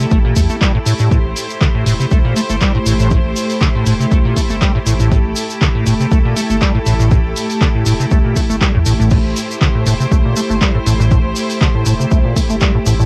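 Trippy and raw, this short acid house cut rides a 120 BPM pulse in 4/4 and A minor, with a light 16th-note swing and a single Am7 chord held throughout. A squelchy, resonant acid bass carries the riff from the first moment, its square-wave tone sweeping through the filter with fast, decaying notes, thickened by chorus and analog delay and softened by cassette tape. Beneath it sits a deep, round sine sub bass, while a clear bowed string section sustains chords with light vibrato and a biting yet smooth top, pumping against the sidechain and colored by tape. A punchy, up-front electronic kick drives the groove alongside an analog drum machine supplying crash cymbal, handclaps and hi-hat, with a grainy, close tube shaker ticking underneath. The dry, home-cassette sound keeps the mix raw and immediate, with little reverb around the parts.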